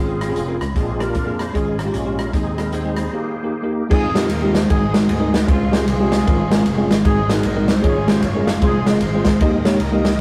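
A hopeful, soulful uptempo gospel excerpt swings in 4/4, opening with a reedy tonewheel organ solo spun through a fast rotary speaker over bell-like tine electric piano, growly slap bass and a punchy, up-front big-band kit with dark cymbals, before a mellow, distant saxophone section takes the melody at 3.9 seconds and the electric piano adds a closing fill at 9.6 seconds, all captured in a rough rehearsal room with warm saturation.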